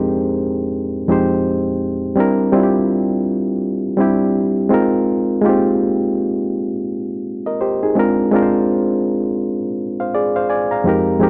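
A barky reed electric piano carries this short R&B passage entirely on its own, sounding bright and clean through its built-in speakers and sitting up front in the mix. The mood is introspective and sultry, moving at 83 BPM in 4/4 with a 60% swing on the sixteenths that gives the pulse a relaxed lilt. The keyboard ranges from F2 up to Bb5, working through a progression of Fm11, C7, Ab69 and Bb9, with the final Bb9 arriving at 8.0 seconds. The sound is dry and close, with little reverb, in the manner of a 1970s studio recording. Cut from a longer piece, it lasts 11.3 seconds.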